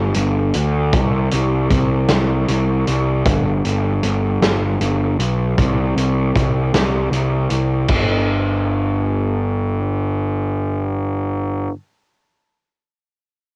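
A fuzzed, growly picked electric bass opens this wistful, jangly indie rock excerpt in a straight 6/8, joined almost at once by a loose, gritty drum kit with dark cymbals, punchy kick and a saturated cassette character that drops out at 8.1 seconds, leaving the overdriven bass up front in a dry home recording until 11.7 seconds.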